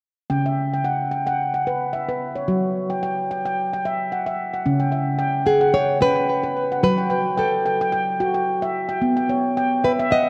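Ringing handpan arpeggios open the recording at 0.3 s, played with soft fingertips on stainless steel and sitting up front with a mellow, mid-forward tone. This is hypnotic, meditative world music at 110 BPM in 4/4, with a light swing on the sixteenths and tuning set to A4 = 444 Hz. The harmony moves from C#m to F#5, then the second section begins at 4.7 s, passing through C#m, F#m and B5. A fingerpicked nylon-string guitar enters at 5.5 s with a full-bodied, deep classical melody, its notes trailed by tape echo. A cavernous church reverb with a 3.5-second tail gives the dark, warm production a spacious glow, and the passage is cut from a longer piece.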